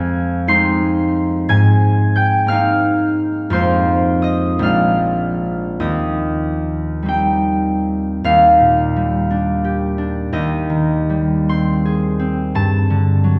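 A solo concert harp, fingerpicked and ringing, carries this peaceful, dreamy classical excerpt in Eb major, moving in a free, rubato 6/8 at about 48-62 BPM in dotted quarters across a range from Bb1 to C7. The harp sits up front, yet the listening position is further back in a church, whose wet reverb, lasting 3.3 seconds, surrounds each note. Lush harmonies such as Fm11 and Bb13 settle onto Eb6, and a new passage opens at 8.2 seconds on Ebmaj7 before the music reaches a Gmaj7 chord with its third omitted at 12.5 seconds.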